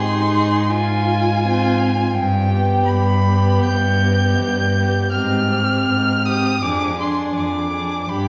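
A string quartet opens together in a slow, elegiac and yearning romantic movement at 81 BPM in a rubato 4/4. The first violin, up front, carries a high, dark, woody melody with vibrato. The second violin adds a close, shaded second line, and the viola gives close, vibrato-rich accompaniment. The cello, also up front, supplies a pure, floating bass with a soft attack. Every part is bowed sul tasto by a single player, and the quartet sits in a long, wet concert-hall reverb heard from further back in the room, in a brief cut from a longer piece.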